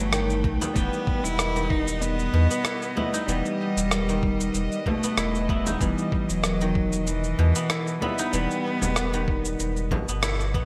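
A warm, hypnotic stretch of organic downtempo, cut from a longer piece, rides a lightly swung groove that sits on a single E minor chord throughout. A rich, bowed cello carries the melody with smooth, even vibrato, heard close as one player and echoed by digital delay, while a bright guzheng picks ringing, silvery arpeggios with fingerpicks. A clean, hollow-bodied electric guitar sits in the background with analog chorus, delay and sidechain pumping, and an airy, breathy pad with a warbling, detuned vintage tone and a noise layer holds soft sustained chords in the upper register, also pumping. A deep, round sine sub bass stays up front with a fast attack, while gritty, tape-warm sampled drums, a thumpy compressed kick and an up-front rim click and cabasa in gated reverb, mix with a large, deep, band-limited frame drum. A lush hall reverb and bright 1980s-style digital production frame the whole, and the band lands a brief accent at 10.2 seconds before the excerpt ends.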